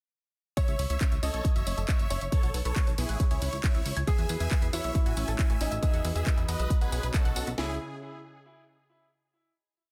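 Bittersweet and soaring, this short uplifting trance piece in C# minor at 137 BPM opens straight into a drop, where a huge, detuned supersaw lead carries a euphoric repeating riff in thirds and sixths through phaser, delay and sidechain pumping, a clear, worn baby grand piano plays a second riff line with digital delay, a tight sequenced synth runs a mellow 16-step arpeggio in the background, a punchy four-on-the-floor kick and cracking snare sit up front with programmed claps, hats and tambourine, a plucky analog bass rolls in sixteenth notes, and dark, woody bowed strings join with lush sustained chords at 4.1 s before everything settles on a final C#5 chord at 7.6 s, all in a dry, dense and heavily limited mix.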